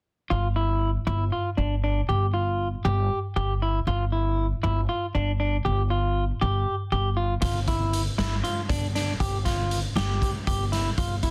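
A dense, heavily limited modern master with light reverb frames this brooding, intricate progressive instrumental in 7/8, cut from a longer piece, where a clean, compressed, fingered electric guitar spins arpeggios over a woody pizzicato upright bass on steel strings from 0.3 s before a gritty, saturated garage drum kit with a punchy kick and a dark, rolled-off top joins up front at 7.4 s.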